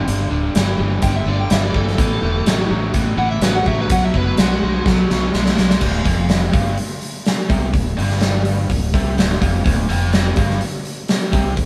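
Driving and sunny, this classic rock excerpt moves in a straight 4/4 with the feel of a band playing live together in one room, touched by light reverb. A bluesy lead guitar with a distorted, picked tone carries the melody from the start, soloing until it drops out at 4.9 s, just as the drums launch a fill that carries into the next section at 5.8 s. Beneath it, a bright, double-tracked overdriven guitar plays a low, picked riff throughout. A growling fingered bass, direct and amped with overdrive, adds punch in the lowest register. The big acoustic drum kit sits up front with a punchy kick, a medium-tuned snare, hi-hat and crash, its top end rolled off for a warm, mid-forward sound. The harmony climbs through G5, A5 and B5 power chords before settling on a Dmadd11 for the second half.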